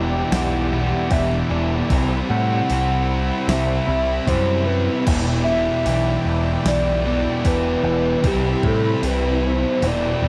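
Shoegaze and dream pop rock with a dreamy, brooding mood, this excerpt from a longer piece sets a hollow, woody clarinet-like synth lead, carried by chorus, phaser and analog delay, over a brassy, nasal analog pad in the background, a dark, up-front fuzz guitar riff, a biting overdriven guitar riff washed in reverse reverb, a growling picked electric bass, and a crisp 8-bit drum machine with a thumpy kick whose kick and snare drop out at 9.8 seconds, all circling Em7 and Cmaj7 in a light-reverb home recording on cassette.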